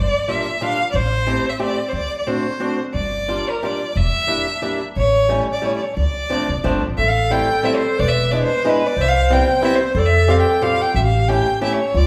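A lightly swung three-four lilt drives this whirling, nostalgic musette waltz, with a woody, thumpy pizzicato upright bass on gut strings and a boxy, fingerpicked acoustic guitar on fresh strings carrying the accompaniment up front. A clear, focused bowed violin sings the melody with vibrato, and at 7.0 s, as the harmony moves into a new section, a dark, classical-style clarinet joins with a second line. The band plays live in one room, bathed in the generous reverb of a large studio, in this excerpt cut from a longer piece.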